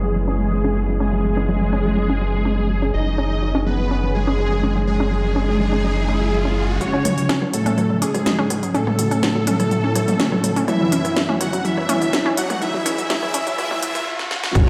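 Melancholic and dark, this excerpt of melodic techno in F# dorian at 124 BPM layers a smooth, full-bodied supersaw melody, a bold ring-modulated polysynth line and a thick, warbling vintage pad, all pumping with sidechain and swept by filters, over punchy detuned pluck arpeggios and a deep, round analog bass that drops out at 6.8 seconds as a riser builds and a tape-warm techno kit with a cracking snare and smooth hats enters, capped by a drum fill and a heavy kick at 14.6 seconds, all washed in a lush hall reverb.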